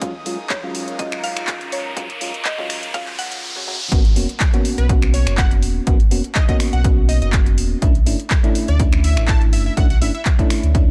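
Deep house at 123 BPM in G# minor, late-night and moody, this excerpt opens on D#m11 with a build-up where a riser and a filter sweep on the soft, warbling FM electric piano stabs gather over a deep sine sub bass, a punchy up-front analog kick, and overdriven drums of finger snaps, handclaps and metallic hats re-recorded in a large room, while dark, bowed chamber strings sit in the background and a woody, mallet-like synth pluck with 12-bit sampler grit carries a brief melody until 3.4 seconds. The drop lands at 3.9 seconds on G#m11, then moves to Bm11, and at 4.8 seconds a catchy, detuned unison lead with a sub octave takes over the melody through cassette tape and analog delay. The sidechain pumping on the piano, bass and strings, the dry mix and the gritty hardware-and-cassette sound give it a hazy, lo-fi edge.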